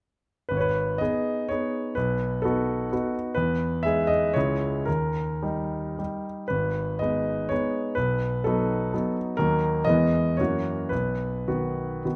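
A clear, intimate grand piano plays solo from 0.5 to 12.2 seconds, sitting up front with natural tone and audible action noise in this short cut from a longer romantic classical piece. The triple-time dance in G# minor moves with dotted rhythms and free rubato between 100 and 136 BPM, its capricious, wistful mood passing through chords such as B7, Emaj7 and D# before settling on B. Close, detailed microphones capture the instrument within a moderate recital-hall reverb.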